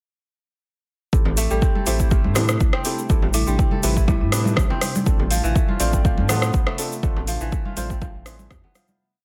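A four-on-the-floor electronic kick, layered, deep and overdriven, sits up front at 122 BPM in 4/4, with a light 16th-note swing driving this short, complete afro house piece in A minor that feels spiritual and warm. Around it, a programmed afro-pop kit adds metallic hats and rim clicks with a small-room, overdriven edge, ringing hand-played congas interlock, and a grainy egg shaker ticks out sixteenths in the background, all arriving between 1.1 and 1.4 seconds as the drop begins. A round sine sub bass plays a dotted rhythm with sidechain pumping, while a bright, crisp fingerpicked kora repeats a 16-step arpeggio pattern through pumping and dub echo. A soft felt-muted upright piano, its action noise audible, adds syncopated close-voiced stabs that also pump and echo, and a woody, rustic folk marimba offers short answering phrases in the background until 4.3 seconds. An ethereal, airy, detuned pad enters at 2.7 seconds, very quiet with chorus and built-in reverb, as the harmony moves from Am7 to F6/A and the track fades out from 6.4 seconds.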